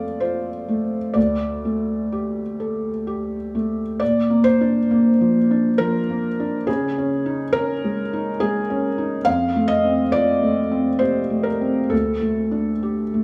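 A felt-muted upright piano plays alone, its mellow, intimate tone sitting up front with the noise of its action audible. The music is neoclassical minimalist piano in Bb major, moving in an unhurried 3/4 at around 62-70 BPM with a rubato feel that lets the time breathe. The piano ranges from D2 up to F5, with harmony drifting from F to Dsus4 before a new passage begins at 4.0 seconds on Bb, then shading into Dbsus2 and returning to F and Dsus4. A recital hall reverb wraps the close instrument in a lingering, wet space. The mood stays tender and peaceful throughout this short excerpt, which runs to 13.2 seconds and is cut from a longer piece.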